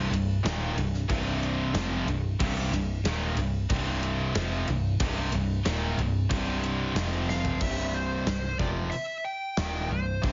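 Hard rock excerpt at 92 BPM in 4/4 with a powerful, anthemic mood, built on a tight, up-front distorted guitar riff over a sludgy overdriven guitar and a scooped, double-tracked high-gain guitar in the background, a round, foam-muted overdriven picked bass, and a punchy gated 80s acoustic kit with bright cymbals in a stone room, moving from C5 to F5 power chords until a drum fill at 7.3 s brings in a dark high-gain lead guitar with slapback echo, all squeezed into a dry, heavily compressed radio-style sound.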